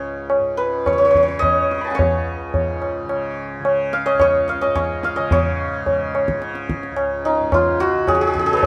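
Moving in a straight three-beat metre, this short Hindustani classical passage, cut from a longer piece, carries a devotional, serene mood. The hammered santur leads the melody up front, its bright, ringing tone sounding through the whole clip. Beneath it the tanpura holds a softly plucked, buzzing drone low in the register, sitting further back in the mix. The tabla enters at 0.3 s with a close, low-tuned sound and short ring, matching the santur's prominence. The ensemble plays together in one room with moderate studio reverb, and the music moves into a new section at 5.3 s.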